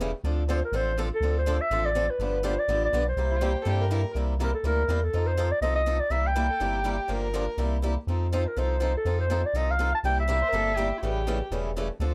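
Swinging and charming, this short excerpt of acoustic string swing in the jazz manouche style moves at a brisk 244 BPM in 4/4, with a lilting eighth-note swing and a C mixolydian color. Two picked acoustic guitars carry the accompaniment throughout: one sounds bright and boxy, while the other sits in the background with fresh strings and audible finger squeak. Underneath, a rubbery, bouncy bass with a hollow, nasal square-wave tone and a moving notch sits dark and up front. A breathy clarinet leads the melody from 0.5 seconds, its dark subtone, soft attack and light vibrato given a vintage touch by a slapback echo. A distant, earthy violin adds a bowed second line in brief phrases, first at 3.3 seconds, then around 6.5 and 10.4 seconds. Close, detailed microphones and light reverb keep the sound intimate as the chords move through dominant sevenths, closing on A7.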